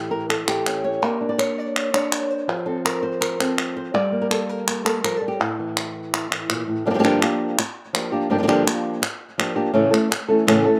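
A dark, fingerpicked flamenco guitar opens this dramatic, mournful flamenco passage at 165 BPM in 4/4, carrying the melody across a range of G2 to E5 over chords that move from A through Bb6, F and Gm. Crisp palmas hand claps join at 0.3 s, sitting up front beside the guitar. The harmony shifts to a Gm7 at 6.9 s before returning to A, all captured dry in an open-air setting with little reverb.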